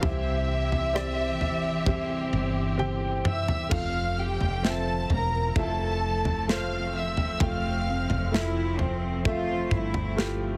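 A pop ballad in F major at a slow 65 BPM in a straight 4/4, this short excerpt feels emotional and heartfelt, moving from a C chord to Fmaj7 as a new section opens at 3.7 seconds. A lush, up-front violin section carries the melody with smooth, even vibrato until 8.3 seconds, when a reedy, nasal cello section with a gut-string, period-style tone takes over with a second line. Underneath, a woody upright piano plays the accompaniment, a picked steel-string acoustic guitar sits in the background with full-bodied arpeggios and a touch of finger squeak, and a distant, focused string section holds sustained chords. A dark, round fretless electric bass anchors the low end, while a polished, airy drum kit with a punchy kick and medium-tuned snare adds rim clicks, crashes, toms and a fill from 2.8 to 3.7 seconds. The mix sits in a small room reverb and carries a heavily compressed, radio-like sound.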